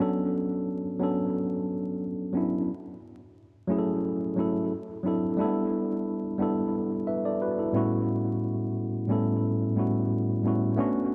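Late-night and introspective, this short R&B excerpt moves at 89 BPM in B minor with a gentle sixteenth-note swing. A lone tine electric piano sits up front, its worn, slightly out-of-tune tone lightly overdriven and heard through built-in speakers, with analog delay trailing its lines as it drifts through Bm9, F#m7, D7, G69 and A13. Moderate spring reverb and an echo-heavy mix lend the sound a hazy depth, while vinyl crackle adds a dusty, aged patina.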